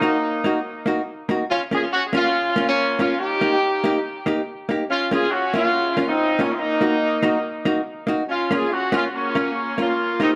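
Set in a wet studio reverb, this short ska excerpt runs at 141 BPM in Bb minor with a light swing on the eighth notes, its mood mischievous and driving. Up front, a punchy, vintage horn section with light vibrato carries the melody through tape echo, while a dark, clean, compressed hollow-body electric jazz guitar supplies picked accompaniment. The harmony moves between Ebm, Bbm and Eb across the roughly 10-second clip.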